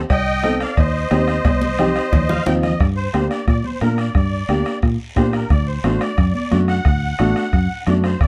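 A round, foam-muted fingered electric bass opens this fiery, driving cumbia at 178 BPM in G harmonic minor. It is joined almost at once by a reedy, shimmering musette accordion melody, a soft-beater bombo, a raspy guiro and very quiet, ringing cowbell and timbales, which drop out at 2.3 seconds during a drum fill. A woody upright piano with short sustain fills out the harmony, with damped, high-tuned congas in the background, as the chords move from Cm to Gm and then D, all in a dark production with light reverb, cut from a longer piece.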